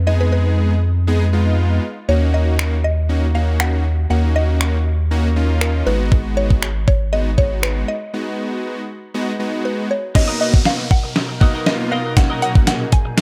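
A straight 4/4 pulse at 119 BPM drives this energetic, driving dance-pop excerpt in Eb minor, cut from a longer piece. A crisp 8-bit drum machine, thumpy in the kick, fat in the snare and set up front, enters at 2.6 seconds with hi-hat, finger snaps and crash cymbal. Beneath it, a round, deep analog bass with a filter sweep and a big, bright detuned sawtooth polysynth both pump against the sidechain, while a woody, mallet-like FM pluck carries the melody through chorus and analog delay. The bass drops out at 7.8 seconds, ahead of a break. A clean twelve-string electric guitar riff with lush chorus slips in at 10.1 seconds. At 10.2 a build-up begins with a drum fill and a descending downlifter, and a glassy, ethereal FM pad follows at 10.3 on slow-attack sustained chords, all in a light, echo-heavy mix.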